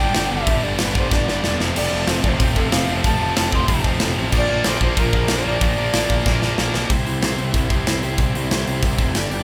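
Punk rock at 187 BPM in 4/4 with a straight, upbeat and rowdy feel, this short cut from a longer piece sits in C major and moves through G, F and Bb before landing on C at 6.9 seconds. A reedy, end-blown shakuhachi carries the melody across a range of A4 to C6, its tongued notes showing chiff and vibrato until it stops at 6.6 seconds. Beneath it, two overdriven electric guitars play riffs from the background, a cranked stack guitar dropping out at 6.9 seconds while a distorted guitar runs on to the end. A growly fuzz bass, direct and amped, holds down the low end from E1 to C2. The tight metal drum kit sits up front with bright cymbals, a medium-tuned snare and a tight kick, adding fills at 1.1 and 6.3 seconds. Light reverb gives the sense of a band playing live together in one room.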